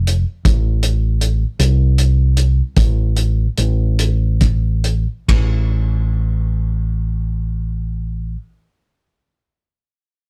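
Folk rock with a heartland rock lean, this brief fragment is cut from a longer piece and moves in a slow, straight 6/8 at roughly 45-53 BPM counted in dotted quarters, settling in A minor with a dusty, reflective mood. A fingered electric bass sits up front, dark and round with a punchy, direct-amped tone, holding the low end between F1 and C2 from the start to 8.3 seconds. A cloth-damped drum kit, thuddy and dry with dark cymbals and a tight kick, works hi-hat, kick and ride until 5.5 seconds, its rolled-off top keeping the sound smooth. The tempo slows from 0.4 to 5.3 seconds, where the opening section gives way to a second passage that the bass carries on its own once the drums stop. Light reverb and a rough rehearsal-room quality give the recording an unpolished, close-up feel.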